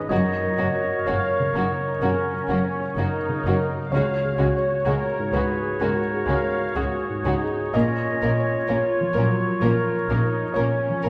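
Sorrowful and bittersweet, this slow, rubato cinematic film-score excerpt at 64 BPM sets a con sordino violin melody over a felt-muted upright piano with audible action noise, veiled viola, cello and double bass sections, a second violin line, and pure flute, distant oboe and background clarinet, all moving through F#6, C#sus4 and A#m in a wet scoring-stage reverb.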